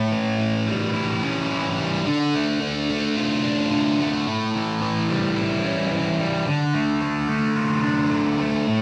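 A thick, bright fuzz guitar, double-tracked and up front with distortion and phaser, takes the solo through this hazy, hypnotic rock excerpt at 109 BPM in straight 4/4, picking between A7 and Dm chords from A2 to F4 in a wet studio reverb with a faint mains hum, like a band playing live in one room.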